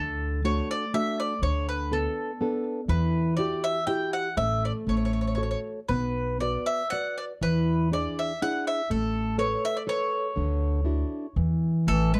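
A bright, picked bowl-back mandolin carries the melody up front in this lively, romantic Italian folk serenade, a short cut from a longer piece in D major, moving in a rubato 3/4 at around 121 BPM. A dark, fingerpicked nylon-string guitar accompanies in classical style while a woody pizzicato upright bass anchors the low end, and the chords pass from D through Bm and E7 before settling on Dadd9. The whole sits in a small, modestly reverberant room with a warm production, and a mellow solo clarinet appears only at 11.9 s, just as the section closes.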